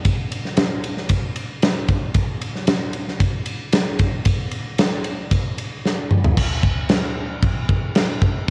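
A straight 4/4 metal groove at 114 BPM drives this relentless, heavy excerpt, played on a big rock drum kit alone, up front and dark with a punchy kick, a medium-tuned snare, smooth crash and ride cymbals and toms carrying a roomy acoustic heft and the grain of cassette tape in a dry home recording, as a drum fill at 5.9 seconds turns the groove into a new section at 6.4 seconds before the kit stops at 8.3 seconds.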